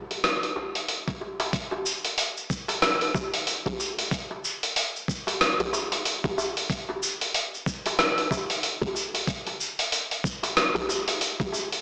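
A blown-out, overdriven sound with a small-speaker character sits inside a wet concert hall reverb, giving this downtempo percussion fragment an earthy, mystical air and a swung 16th-note feel. A dusty soul sampler-style kit, gritty and up front, carries hi-hat, rim click and shaker, with soft clipping on the snare, while a medium-tuned acoustic djembe plays quietly in a live room beneath it. From 1.1 seconds a thumpy, tape-warm electronic kick drum joins, re-recorded in a large room.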